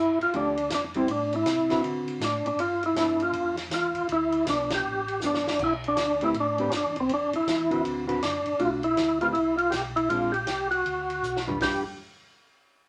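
A percussive tonewheel organ carries the melody up front in this swinging, bluesy soul jazz organ trio, lightly overdriven with chorus vibrato and a slow rotary speaker. Beneath it, a mellow tonewheel organ supplies a round, dark bass line, a clean, fingered hollow-body jazz guitar comps, and a vintage drum kit with a punchy kick and a rolled-off top plays fills at 5.2 and 11.2 seconds. A band accent lands at 4.6 seconds, and a wet small-room reverb keeps the trio sounding close and intimate in this passage cut from a longer piece.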